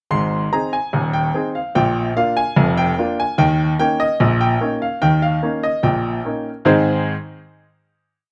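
Playful and jaunty, this brief ragtime piece in a straight 2/4 is played by a solo baby grand piano, heard up front with a clear, natural tone and short sustain. A single-line melody rides over a stride bass that reaches down to Eb1, moving through Ab, Bb and Eb7 before settling on a final Ab chord at 6.7 seconds. The sound is dry and open, with little reverb, as it was recorded outdoors, free of any room sound.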